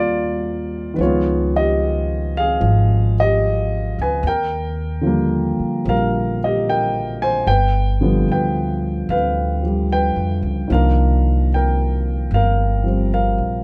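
A grand piano sits up front in this intimate, wistful jazz ballad, its warm, natural tone carrying audible action noise as it plays accompaniment from 0.0 to 13.6 seconds across a range from D3 to Ab5. Beneath it, an acoustic upright bass with steel strings is plucked pizzicato throughout, giving a woody, growly low end between G1 and F2. The tune moves at a slow 74 BPM in 4/4 with a swung eighth-note feel, set in C minor and tuned to A4 = 441 Hz. The harmony opens on a rootless Abmaj9, then moves through Db9, Ebmaj9 and G7 before settling on Cm11 at 10.7 seconds. Close, detailed microphones and little reverb keep the sound dry and personal in this short passage cut from a longer piece.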